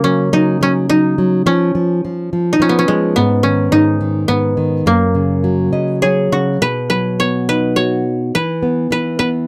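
Gentle and innocent, this short lullaby for children sways in a lilting three-beat metre with a loose, rubato feel, and it is cut from a longer piece. A koto carries the melody, its fingerpicked tone bright and woody, sitting up front and dry. Beside it, a fingerpicked nylon-string guitar provides the accompaniment in a classical style, its sound warm and close, with audible finger squeaks on the strings. The guitar steps forward with a brief fill from 5.4 to 6.6 seconds, just before the music moves into a new section. Both instruments play throughout, and the close, dry studio sound with only light reverb gives the recording a 1970s character.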